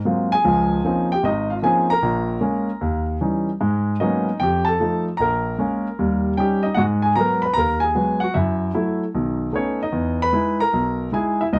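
A swung 4/4 pulse at 152 BPM carries this short cut from a longer solo jazz piece in G# minor, with a cool, late-night mood. A single baby grand piano, present and polished, sits up front from 0.1 to 11.6 seconds, ranging from G#1 to B5 through rich chords such as C#maj13, D#7b9 and G#m11 before moving toward F#m7, B7 and Emaj7 in the second section starting at 6.8 seconds. Light reverb and a dark, warm production give the sound a mellow, intimate glow.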